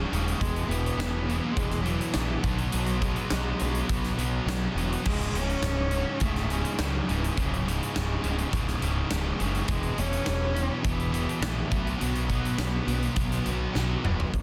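This cut from a longer alternative rock piece opens with two crunchy, overdriven picked electric guitars playing a riff in the background, a fuzz-drenched picked bass punching up front, and a very quiet, reedy tonewheel organ holding sustained chords through a slow rotary speaker. A big acoustic rock kit joins almost at once, sitting forward in a natural, roomy sound: a punchy kick, a medium-tuned snare with soft clipping, toms, hi-hat and bright crash cymbals. At 0.4 seconds a single distant cello enters with an expressive bowed melody, shaded with vibrato and portamento. The harmony moves from E to B and then to a lingering C#madd9 before returning to E and B, and a drum fill closes the passage at 13.7 seconds. The mood is angsty and cathartic, carried by a dense, heavily limited modern master with light reverb and studio ambience over a straight 4/4 pulse.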